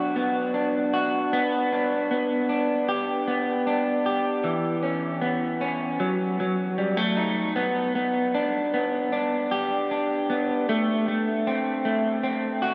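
A straight, unhurried 4/4 pulse at 77 BPM carries this hazy, haunting dream pop fragment, cut from a longer piece. A lone electric guitar plays solo for the full 12.7 seconds, sitting up front in the mix with a warm, slightly broken-up tone from a small old amp. Picked notes between E3 and G4 pass through analog chorus and analog delay, then dissolve into a huge ambient reverb with a seven-second tail that soaks the whole sound in mist. The harmony drifts from Bm/F# to Bm, C#m7/E and F#m6 before a new passage at 7.6 seconds returns to Bm and settles on Am. The result feels suspended and ghostly, a single instrument blurred into a vast, echoing space.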